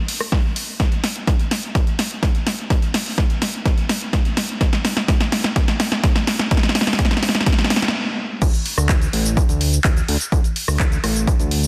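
A fat, detuned sawtooth analog bass with a filter sweep arrives up front at the drop at 8.4 seconds, capping an emotional, bittersweet progressive house excerpt in which a punchy, layered electronic kick recorded again in a small room and a tape-warm house kit of punchy snare, hi-hats, cabasa, handclaps, rim click and crash drive a build-up and drum fill that halts in a brief stop at 7.9 seconds, the kit's hats, cymbals and percussion and the bass pumping with sidechain inside a lush hall reverb and a dense, heavily limited modern master.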